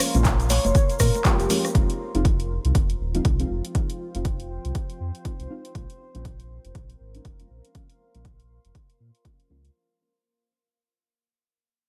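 Late-night and warm, this swung deep house excerpt is cut from a longer piece and fades out across its full 9.7 seconds over Bbm7 and Fm7 chords. A punchy, up-front electronic kick and a deep, sine-toned sub bass with octave anchor the groove, while the drum kit's dusky hi-hats, handclaps and rim clicks and a soft, dark chord stab with a filter sweep, ensemble chorus, delay and sidechain pumping sit over a moody, warbling ambient pad. A grainy tube shaker and ringing, high-tuned congas sound only in the opening moments, and a velvety, detuned synth lead with vibrato, tape echo and 12-bit sampler grit appears briefly at 0.5 seconds, with little reverb on the overall mix.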